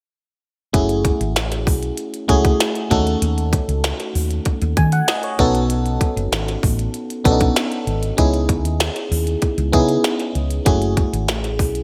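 From 0.7 s, a glassy, bell-like FM electric piano with subtle chorus, a round, punchy hollow-body short-scale fingered electric bass and a tight, clicky electronic drum kit carrying overdrive and gated reverb enter together up front in a polished, bittersweet, nocturnal 1980s jazz-funk pop groove at 97 BPM in 4/4, cycling through F#m9, D#m7b5, B9 and C#m7 back to F#m9 under a moderate plate reverb and bright digital production in this short cut from a longer piece.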